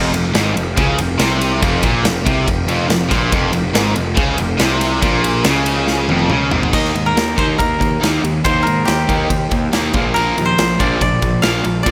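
Hard rock in F minor at 141 BPM, menacing and aggressive, where a punchy, up-front drum kit in a big room drives riffs from a distorted electric guitar, an overdriven hollow-body guitar and a double-tracked high-gain guitar, all three set back in the mix, over a growly fuzz bass and a very quiet, gritty tonewheel organ on slow rotary speaker, until a drum fill ending at 6.7 seconds brings the organ and high-gain guitar to a stop and a dry, woody koto takes the melody up front with digital delay over Eb and Bb chords.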